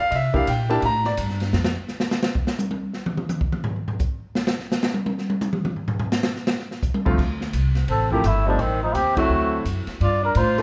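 A moderate recital-hall reverb gives this moody, cool small-group swing and bop excerpt a sense of space, as if heard in a church or concert hall. It opens on a brief C9 hit from a clear grand piano, whose action noise is audible, and a woody pizzicato upright bass. The drums then carry a solo from 1.5 to 7.2 seconds on an open kit with dark cymbals, a boomy kick and a rolled-off top. Piano and bass return at 7.1 and 7.2 seconds, and at 7.9 seconds a mellow, veiled cup-muted trumpet takes the melody with vibrato while a breathy, whispered tenor saxophone with scooped notes and a subtone plays a second line beneath it. The band hits an accent at 9.1 seconds as the harmony moves through D7 and Am toward Gm9.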